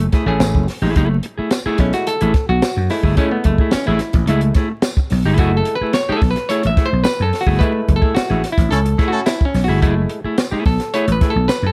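Funky and cool, this funk excerpt rides a growly, up-front slap bass and a dry cocktail kit with a punchy kick and high-tuned snare, while a dark, clean fingered electric guitar sits under a stringy, percussive clav that takes a solo from 1.0 seconds, a jingly tambourine glimmers distantly in the background, a clear horn section adds a brief smooth-topped line at 8.7 seconds during a band accent, and vinyl crackle and a small room give the recording its vintage air.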